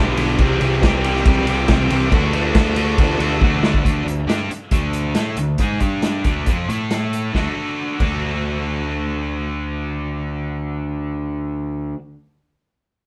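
Driving and swaggering, this classic rock excerpt moves at 138 BPM in a straight 4/4, centred on D mixolydian. A bright, double-tracked distorted guitar riff sits up front throughout, joined at first by a second overdriven guitar riff tucked in the background and a very quiet, gritty tonewheel organ holding sustained chords through a slow rotary speaker with key click and chorus vibrato. A growly fuzz bass, punchy and picked, drives the low end alongside a vintage kit with dark cymbals, a medium-tuned snare and a pumping small-room sound with a rolled-off top. A drum fill at 3.4 seconds leads into a new section with power chords on D, G and A; the organ and second guitar drop out at 3.8 seconds. The drums stop at 8.1 seconds, leaving guitar and bass to carry the riff, all captured as a band playing live in one room with moderate reverb.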